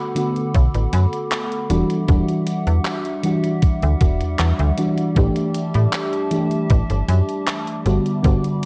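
Vaporwave at 78 BPM in 4/4 with a straight feel, this short excerpt from a longer piece sounds woozy and nostalgic, moving through Bm7, Em9, A7sus4 and Gmaj7. A soft, round FM electric piano carries the accompaniment from the start, dark and up front with a noise layer, treated with analog chorus and analog delay. Alongside it a warbling, lo-fi tape-like pad holds sustained chords with a slow attack and long release, colored by chorus, its own reverb and vintage 12-bit sampler grit. A detuned 8-bit drum machine adds handclaps and hi-hat from 0.2 seconds, and at 0.5 seconds a thumpy electronic kick and a snappy, slap-like FM bass with a metallic attack arrive, both sitting prominently in the mix. The drums sound re-recorded in a large room, and the whole track has a cassette-tape character with light reverb.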